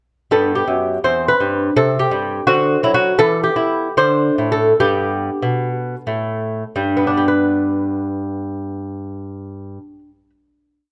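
Classical baroque-style dance for solo lute in a lilting 6/8, flowing and dance-like with a free, rubato feel, heard here as a complete short piece. The lute sits up front, its delicate fingerpicked nylon and double strings giving a warm tone with some octave-doubled courses, carrying a single-line melody over a walking bass. Close, detailed miking and light reverb capture the playing as it slows from 2.5 to 6.8 seconds before settling onto a final chord that rings until the lute stops at 10.3 seconds.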